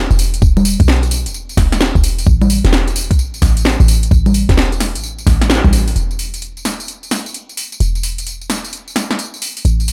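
A punchy, tight 808-style bass opens this sunny, bouncy two-step UK garage cut at 130 BPM, its sine tone and noise layer sitting up front with a fast attack and mellow decay as the swung sixteenths roll along. A tape-warm house kit, re-recorded in a small room, joins with congas, tambourine, metallic hats and a cracking snare, while an overdriven, knocking electronic kick drives the groove from 0.4 until it drops out at 5.7 seconds, just after a band accent at 5.5. Light reverb surrounds the mix, and the clip is cut from a longer piece.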